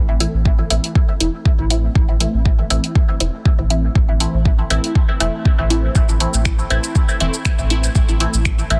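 Dense and heavily limited, the recording sits in a digital ambience that gives this hazy, nocturnal dub techno excerpt a close, compressed feel. It moves at 120 BPM in 4/4 with a light swing on the sixteenths, resting on an A minor chord throughout. A round, soft sub bass built from triangle and square waves holds the low end from the first moment, its tone thickened by tube saturation and breathing with sidechain pumping. From 0.2 seconds, a muted, warbling chord stab of detuned sawtooth and pulse waves plucks through a filter, phased and trailed by dub echo, while an analog drum machine with a tape-warm character adds finger snaps, hi-hat and shaker, with soft clipping on its snare. At 0.5 seconds a deep, layered electronic kick drum enters up front, its re-recorded small-room character anchoring the groove as the loudest element in the mix.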